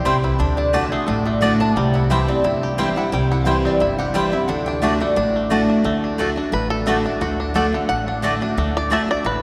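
This joyful, lively bluegrass clip opens at once with banjo, lap resonator guitar and picked steel-string acoustic guitar together, moving at a brisk 176 BPM in 4/4 with a light swing on the eighths, in D mixolydian. The fingerpicked banjo carries a twangy, percussive melody beside the metallic, nasal slide lines of the resonator guitar, while the bright, full-bodied dreadnought guitar sits up front with its accompaniment. Mandolin stabs add a woody, double-string sparkle, and pizzicato upright bass on gut strings supplies a thumpy low end. The harmony moves from D to C and back to D. The resonator guitar drops out at 5.3 s, and from 5.8 s the banjo takes a solo through to the cut at 9.4 s, all set in the long, wet reverb of a church or concert hall.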